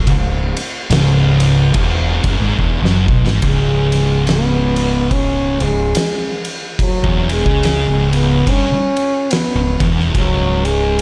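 Heard in a small room, this brooding, hypnotic stoner and doom metal excerpt in C# minor crawls at 71 BPM with a swung 4/4 feel, as two thick, picked fuzz guitars grind out a riff in the background over growly overdriven fingered bass and an oversized, low-tuned drum kit with a boomy kick, fat snare and dark ride cymbal, until a drum fill at 2.6 seconds leads into the entry at 3.4 seconds of a mellow, distant French horn melody with light vibrato and analog delay.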